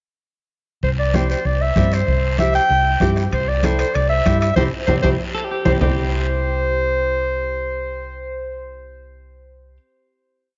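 A dreamy, reverb-soaked mix with a dulled top end carries this short, sunny cumbia in C major at 193 BPM, where a clear, up-front clarinet sings motif-based phrases over a dark, round hollow-body bass, soft bombo, low-tuned congas, raspy guiro and a fingerpicked flamenco guitar under lush chorus, with ringing timbales joining at 3.3 seconds, a slightly broken-up electric guitar adding answering phrases in the melody's rests from 5.3 seconds, and a band accent and drum fill leading to a final chord at 5.8 seconds.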